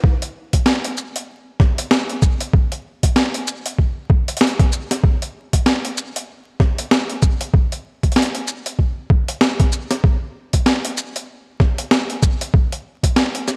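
Glitch hop with a funky, gritty mood, this drums-only excerpt swings its 16th notes in 4/4. A pitched-down, thumpy electronic kick drum sits up front with overdrive from 0.0 to 13.1 seconds. Alongside it, a boom bap sampler-style kit with hi-hat, shaker and a high-tuned snare arrives at 0.2 seconds, compressed and overdriven with gated reverb, all in a bright 1980s-style digital production with light reverb and vinyl crackle.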